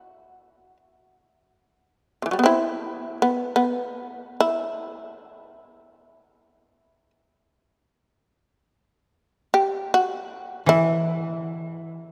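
Austere and still, this short excerpt from a longer piece of Japanese traditional chamber music unfolds in free time, in E hirajoshi. The shamisen carries the melody from the opening second, ranging from C3 to G4 with a powerful, buzzing, percussive plectrum attack and a fretless, up-front presence. Near the close, at 10.7 seconds, the koto joins on a single E3 as accompaniment, its fingerpicked tone woody, dry and close beside the shamisen. A church reverb hangs a long, wet tail of about 3.3 seconds over the recording, lending the sparse lines a sense of open, hushed space.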